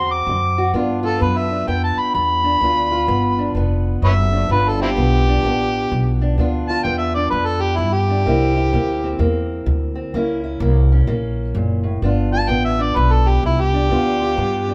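A swung 4/4 at 128 BPM sets a laid-back, soulful groove for this short cut from a longer acoustic country blues in G mixolydian, moving from D7 and G7 through C7 and F#7#11 before landing back on G7. An overdriven, amplified harmonica carries the gritty, jazz-style solo up front with vibrato, tongue slaps, scooped notes and tape echo, dropping out at 9.3 seconds and returning at 12.3 seconds. Beneath it, a dark, boxy parlour steel-string guitar fingerpicks the accompaniment while a woody pizzicato upright bass holds the low end, all three heard up close in a moderate large-studio reverb as a band playing live in one room.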